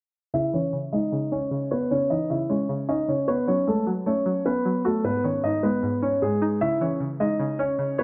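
Heard in a small, lightly reverberant room with a dulled top end, this menacing half-time hip hop excerpt at 153 BPM in C# minor sets a dark, mellow, boxy grand piano melody up front against a twangy, nasal string-like resonator pluck with chorus and a filter sweep, both playing from 0.3 to 8.0 seconds over a C#m, F#madd9, G#sus4 and back to C#m progression.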